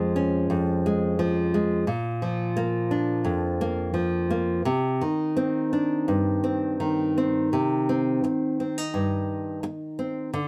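Folk fingerstyle in C minor at a loose, rubato 86 BPM, this intimate, reflective 10.5-second fragment of a longer piece features a solo nylon-string guitar, fingerpicked with a classical touch and placed up front by close, detailed microphones in light reverb, moving from Db/F through Bb and Cmadd9 before settling on C minor at 7.5 seconds.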